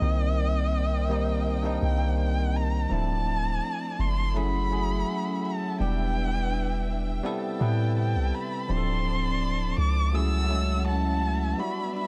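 A sensual, late-night R&B excerpt at 83 BPM opens with an expressive erhu singing its vibrato-laden, portamento-rich melody high over a bell-like, barky electric piano dressed in lush chorus and analog delay, a smooth bowed string section sustaining chords beneath, and a deep, dark 808-style bass holding long tones until it drops out at 11.5 seconds, just before a brief break at 11.6 seconds, all set in an echo-heavy small room.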